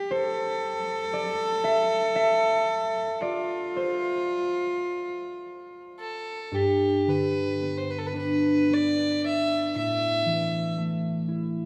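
A rubato 3/4 pulse drifts between 51 and 61 BPM in this tender, wistful Celtic slow air in G mixolydian, tuned to A4 = 445 Hz and cut from a longer piece. A ringing, thumb-plucked concert harp carries the accompaniment throughout, while a rich, pure cello, bowed sul tasto with a soft attack and a floating tone, sings a second line until 5.9 seconds. A reedy, gut-string fiddle then takes the melody from 6.0 seconds, sounding distant over G and A5 chords, with everything bathed in a wet cathedral reverb.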